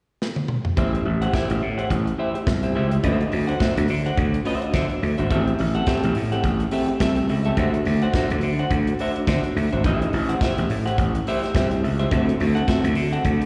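Heard through a venue's PA with recital hall reverb and a small-room ambience, this glamorous, driving disco excerpt moves at 106 BPM in A dorian, swinging its sixteenths and alternating Am7 and D9 chords. A drum fill on the modern studio kit opens at 0.2 seconds, with a punchy kick, medium-tuned snare, hi-hat and toms in a warm, rolled-off sound. At 0.8 seconds a growly, overdriven slap bass steps to the front, bright and amped, alongside a clean, picked semi-hollow guitar whose hollow-body tone is coloured by spring reverb and slapback echo.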